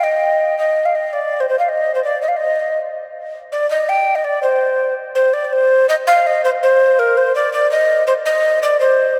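A deep, wet cathedral reverb with a long decay surrounds this short medieval piece, cut from a longer work and recorded in a church or concert hall. A single tenor recorder plays solo and up front from 0.0 to 9.2 seconds, its wooden, hollow tone both breathy and mellow. Each note begins with a crisp attack and a touch of chiff, and vibrato colours the tone. The music moves in 6/8 with a straight feel, giving it a driving yet ancient mood. A first phrase runs to 5.0 seconds before a contrasting second phrase carries the line to the close, all within a range from Bb4 to G5.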